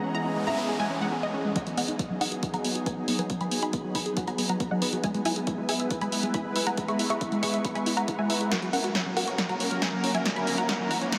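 Emotional and euphoric, this uplifting trance passage in G# minor moves at 138 BPM in a straight 4/4, cut from a longer piece and soaked in a huge, dreamy reverb. A thick, detuned unison pad holds sustained chords with a slow attack and long release, while a tight, nasal sequenced synth drives arpeggios and a full-bodied, wave-folded unison pluck carries the mellow melody with a fast, decaying attack; all three pump to the sidechain, and the pluck and arpeggio trail analog delay. In the opening moments a soft, felt-muted upright piano adds an intimate second line in the background, alongside an electronic noise sweep, over a C#m7 chord. At 1.6 seconds the drums arrive: a punchy, tape-warm electronic kick and an up-front analog drum machine snare and hi-hat, both re-recorded in a small room. The build-up then opens a filter sweep on the arpeggio through G#m7, E and F#, with a drum fill from 8.5 seconds and a riser from 9.2 seconds.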